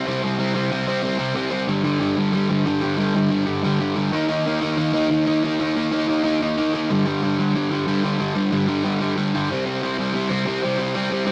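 This energetic, rowdy punk excerpt charges along at 184 BPM in a straight 4/4, lasting about 11 seconds. A single crunchy, overdriven electric guitar carries the whole passage on its own, picked and double-tracked so it sits thick and up front, with a warm edge under the grit. It moves through the chords C5, G5, Eb5, back to G5 and then C5, reaching Eb5 at 4.1 seconds and returning to C5 at 9.5 seconds. The guitar spans a range from G2 up to Eb4. A moderate studio reverb adds some space around it, while the rough rehearsal-room sound keeps the whole take raw and unpolished.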